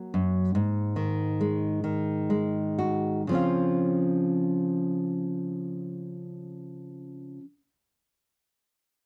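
A lone nylon-string guitar opens this short folk fragment, fingerpicked in a classical manner and placed up front in a dry, close recording with a 1970s studio character. The mood is nostalgic and tender, moving in a slow 6/8 at roughly 40-50 beats per minute with a straight feel in D-flat major. Across the first 3.3 seconds the pulse slows down as the guitar moves from a Gb chord to an Ab5. A new passage begins at 3.3 seconds, settling onto a Dbmaj7. The acoustic tone is warm, spanning from Gb2 up to Gb4, and the piece is cut from a longer work.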